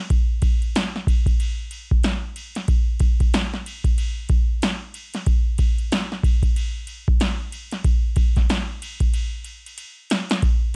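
A drum machine opens this short hip hop excerpt at 0.1 seconds, setting a relaxed, cool groove at 93 BPM in 4/4 with a 60% swing on the sixteenths. The electronic, analog kit is the only part, built from a deep kick, a punchy snare, metallic hi-hats and a ride cymbal. Its sound is overdriven and carries the grit of a vintage 12-bit sampler, placed up front in a light reverb. The pattern holds a single section throughout, and a drum fill arrives at 9.1 seconds before the machine stops at 10.6 seconds.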